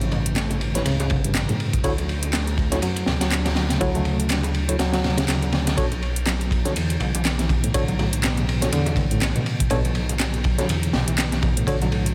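A swaggering, funky breakbeat excerpt at 122 BPM in B minor, swung on the sixteenths, built on a crunchy breakbeat kit with a punchy kick, high-tuned snare and dark ride cymbal, layered with a house kit's handclaps and metallic hi-hats and very quiet, band-limited congas and bongos. A reedy, worn reed electric piano plays the riff with fast tremolo over a deep, rumbling detuned saw bass, while a tine electric piano adds clean stabs from 0.8 seconds, roughened by 12-bit sampler grit and dub echo. The harmony moves from A7 to Dmaj7 and then Bm7, all in a small room ambience.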